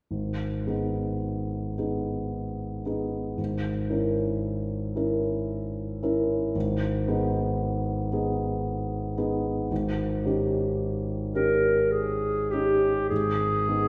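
Elegiac and solemn, this fragment of a romantic classical duo moves in a slow, rubato 3/4 at roughly 49-58 BPM in G# minor. A dark, mellow concert grand piano with deep bass carries the accompaniment from the start, circling G# minor harmony over a G# in the bass. At 11.3 seconds a clear, soft-attacked clarinet with a vintage character enters up front with the melody, all set in a reverberant concert hall heard from further back.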